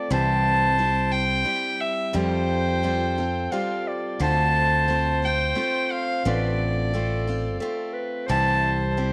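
A nasal, reedy bowed fiddle carries the melody up front, its gut-string tone touched with slapback echo, in this intimate, haunting acoustic folk piece in D minor, moving at 88 BPM in a straight 3/4. Beneath it, a clear, soft-attacked clarinet plays a second line while a bright, freshly strung steel-string guitar picks out the accompaniment through C, Fadd9 and Dm7. A warm, amped fretless electric bass with tube saturation sits up front alongside the fiddle, all within light small-room ambience, in this short cut from a longer piece.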